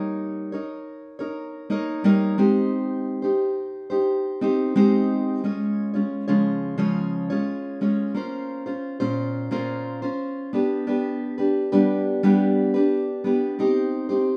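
A fingerpicked steel-string acoustic guitar plays alone and up front, with a dark, full-bodied tone, in this easy-going, sunny pop passage cut from a longer piece. The guitar moves from Eb7/G and Abmaj7 into a second section at 5.4 seconds, where Db, Bbmadd9 and G lead to a closing Cm. A wet studio reverb and a live-in-the-room sound frame the playing, and the top end is rolled off above 10.7 kHz.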